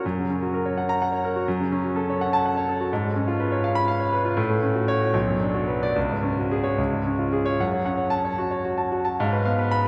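Classical romantic character piece for solo piano in F# minor, brooding and passionate, unfolding in 6/8 with free rubato at roughly 71-84 BPM, as a clear, up-front concert grand with deep bass and natural tone spans B1 to B5 through chords moving from F# and F# minor to a C# resolution before a new section begins at 7.6 seconds, all bathed in a long, wet church reverb in this short extract from a longer piece.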